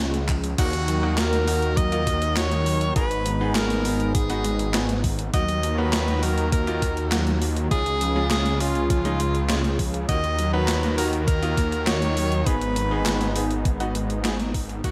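A bright, vibrato-laden tenor saxophone with a soft attack, 12-bit sampler grit and tape echo carries the jazz-style solo melody from 0.6 s in this moody, cinematic synthwave excerpt, over a thick, detuned saw bass sitting up front and a warm analog pad of sustained chords, both pumping with sidechain, while a dark, clean electric guitar plays arpeggios through delay, a clear grand piano adds intimate stabs with audible action noise, and a thumpy, overdriven electronic kick joins a gated 80s drum machine of snare, handclaps, hi-hat and crash, with a drum fill at 0.3 s and the fade-out arriving at 13.3 s.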